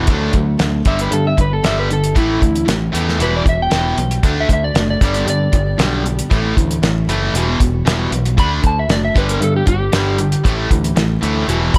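A straight 4/4 beat at 116 BPM drives this gritty classic rock excerpt, with a cloth-damped, thuddy drum kit sitting up front, its fat snare, tight kick and hi-hat rolled off on top, over a punchy, direct picked electric bass. Two bright, overdriven electric guitars play a riff in the background while a full-bodied jumbo steel-string acoustic adds very quiet picked accompaniment with audible finger squeak, all cycling through D, G, A and Emadd9 in a small room. From 0.9 s an electric slide guitar takes the melody as a solo, its fingered tone slightly broken-up and warm, reaching up to B5.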